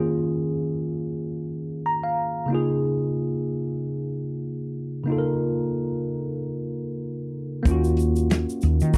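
Relaxed and warm, this short neo-soul and R&B cut opens on a worn, slightly out-of-tune tine electric piano with analog chorus, moving from Ebm9 to Db69 after a brief fill around 1.5 seconds. At 7.7 seconds a woody, growly fretless bass, a dark soul drum kit with a tight kick and rolled-off top, and a soft egg shaker with finger snaps join with a swung sixteenth feel. A clear, tight horn section adds a vintage stab with octave doubling at 8.9 seconds, all captured in a dry, close 1970s-style studio sound with light reverb.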